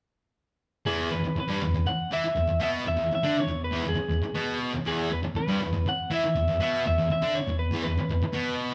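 Raw and swaggering, this rock excerpt in a straight 4/4 feel is cut from a longer piece, with both guitars entering together at 0.9 seconds over an E5 chord. A thick, bright fuzz guitar sits up front, double-tracked and distorted as it picks out a riff in the low-to-middle register, while an electric slide guitar, played with fingerpicks and slightly broken-up, carries the melody higher with a compressed, warm tone. The band plays live in one room, and a wet large-studio reverb gives the sound a roomy sheen.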